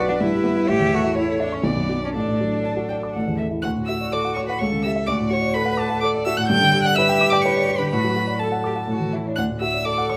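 Close, detailed microphones catch the audible action noise of a dark, mellow baby grand piano, up front in a recital hall with moderate reverb, in this spirited, graceful fragment of a quick classical-period movement for piano quartet in 3/4 with a rubato feel. Over the piano's intimate, short-sustained accompaniment, a rich, smooth and even violin with vibrato carries the melody, while a second violin adds warm, expressive lines with portamento, and a focused, distant cello joins at 0.1 seconds with its own second line. A new section begins at 3.6 seconds, and the harmony comes to rest on a D chord at 9.4 seconds.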